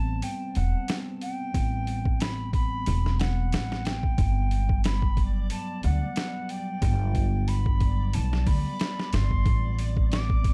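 Trip hop with a smoky, dark mood at 91 BPM in 4/4, its sixteenths lightly swung, moving from Am9 to Gmaj7 and back in this short cut from a longer piece. A woody, growly pizzicato upright bass with tube saturation and a gritty, pitched-down, sampler-style boom bap kit with a thumpy kick sit up front, the drums entering at 0.2 seconds. Around them a detuned analog pad holds moody chords through chorus, a pure, straight-toned concert flute carries the melody through tape echo, and from 5.2 seconds a reversed, granular swelling texture drifts dreamily in the background.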